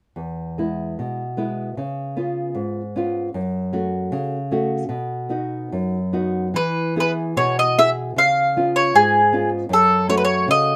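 A rubato 2/4 pulse around 76 BPM carries this nostalgic, tender fado-style ballad in E major, cut from a longer piece. A small-sounding, thumb-plucked nylon-string guitar plays alone from 0.2 seconds, moving through E, C#7, F#m and B. At 6.6 seconds a bright, woody mandolin with double strings takes the melody up front over the guitar, all set in light reverb with close, detailed microphones.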